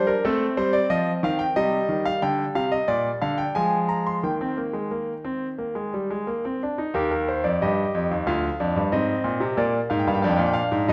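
A straight 4/4 pulse at 91 BPM carries this serious, solemn baroque-style three-part fugue in Eb major, played by a solo concert grand piano from the start to 10.9 seconds and cut from a longer piece. The piano sounds bright and polished, with deep bass, long sustain and an up-front presence, ranging from D2 to C6. A wet recital hall reverb surrounds it, and the harmony moves through chords such as Am7b5, Cm, Bb7 and Eb before a new passage begins at 6.9 seconds.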